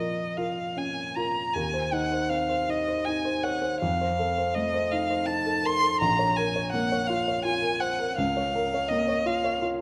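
A rich, smooth and even violin with vibrato sings a melancholic, elegiac melody high above a warm, present baby grand piano accompaniment from the very start of this romantic classical fragment in Bb minor, cut from a longer piece and moving in a slow, rubato 6/8 at 54 BPM through Bbm, Ebm13 and F7 harmonies before settling on Bbm/Db, with both players up front in the moderate reverb of a scoring stage.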